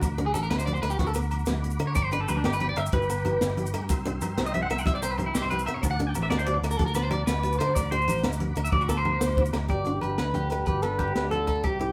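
A sunny highlife guitar band piece in 12/8 at 124 BPM in G major opens with a round, punchy fingered electric bass up front, a dark compact cocktail drum kit with a high-tuned snare and drum fills, ringing agogo bells, hard-hand congas, grainy maracas and a soft, flute-like tonewheel organ holding sustained chords through a fast rotary speaker, while a twangy, slightly broken-up electric guitar with phaser plays arpeggios beside a bright, boxy picked swing-style acoustic guitar, and at 9.7 seconds a veiled bucket-muted trumpet takes the melody over a very quiet, clear trombone second line.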